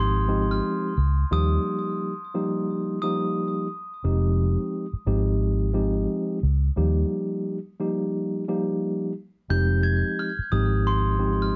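A round, punchy, foam-muted electric bass sits up front in this moody, gritty boom-bap hip-hop excerpt at 88 BPM in F minor, its dark, amped tone anchoring a swung 4/4 groove that moves between Fm7 and Ebadd9. A mellow, clean tine electric piano plays accompaniment through built-in speakers with a cassette-tape character. A bell-like glockenspiel struck with soft plastic mallets rings out a smooth high melody with delay, heard at the start and again from 9.5 seconds, all within a dark production with light reverb.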